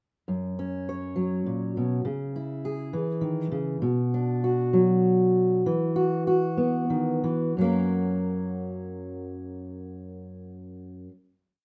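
In a straight 3/4 lilt at roughly 90-102 BPM, this brief acoustic folk piece unfolds in F# mixolydian with a pastoral, nostalgic mood. A lone fingerpicked steel-string acoustic guitar carries the whole thing, playing a sparse fingerstyle passage across a range from F#2 to C#5. Its tone is warm with an auditorium-like body, sitting up front with finger squeaks audible. The harmony moves from F# through C#m, Bm and Esus2, and the tempo begins slowing down at 3.8 seconds, easing into a final F# chord at 7.6 seconds that lingers until the guitar stops at 11.1 seconds. A wet studio reverb with a 0.7-second tail surrounds the playing, and the overall sound has the rough feel of a home demo mix.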